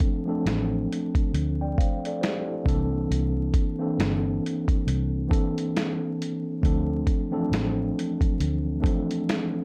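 A muffled, pitched-down sampler-style drum kit with a thumpy kick, medium-tuned snare, hi-hat and finger snaps opens this nostalgic, reflective lo-fi hip hop excerpt with a lightly swung feel alongside a mellow, low-pass-filtered tine electric piano moving through Dm7 and C13, joined from 0.5 s by a dark, round, foam-muted fingered electric bass, all set in moderate reverb under a layer of vinyl crackle.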